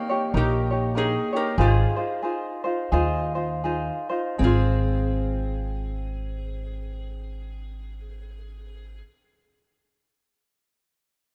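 A metallic, nasal resonator slide guitar played with fingerpicks carries the melody in this sunny, dreamy Hawaiian excerpt in Ab major, swung at 76-100 BPM and slowing over the first 4.4 seconds. A full-bodied fingerpicked jumbo acoustic guitar adds a second line, a light, up-front fingerpicked tenor ukulele accompanies, and a woody, thumpy pizzicato upright bass enters at 0.3 s. It moves from Eb7 to Ab6 in a rough home-demo mix with light small-room reverb.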